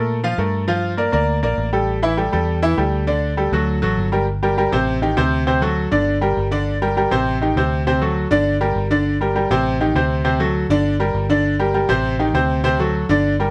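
Salsa with a driving, fiery mood, this excerpt pairs a brilliant, up-front concert grand piano carrying the accompaniment with a dark, round, foam-muted electric bass underneath, both playing from start to finish. After an opening passage of shifting chords, the music settles at 4.3 seconds into a repeating minor cycle of Gm, Am7b5 and D7 that gives it urgency. The piano's worn tone and deep bass stand out over the amped bass, all set in a light reverb.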